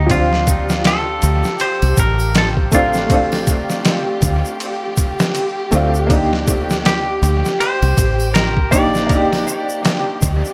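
A swung 80 BPM trip hop groove in 4/4 drives this cinematic, hypnotic passage in D phrygian: a gritty, pitched-down sampler-style drum kit thumps up front through overdrive and dub echo, a round, foam-muted fingered electric bass sits beneath, a close, dry tube shaker and triangle add detail, a woody, slightly detuned upright piano carries tremolo, 12-bit sampler grit and tape echo, distant lush bowed strings hold sustained chords, and a bright, clean semi-hollow electric guitar plays the melody with tape echo until 9.4 seconds, while the harmony moves from Dm7 to a rootless Cm9 at 6.1 seconds in an echo-heavy mix.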